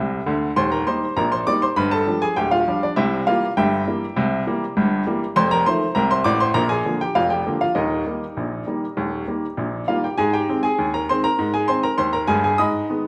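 A straight 2/4 pulse at 100 BPM drives this cheerful, lively ragtime piano excerpt, cut from a longer piece. A bright upright piano plays solo throughout, opening with a short fill in the first 0.6 seconds before settling into its strain. Its tone is brilliant and woody, polished and up front, with a short sustain that keeps each note crisp, and it ranges from deep bass down at D1 up to Eb6. The harmony moves from Eb through a chain of dominant sevenths, G7, C7, F7 and Bb7, before resolving home to Eb, then shifts to Ab as a new section begins at 10.2 seconds. A wet recital hall reverb surrounds the instrument, giving it the resonant air of a church or concert hall.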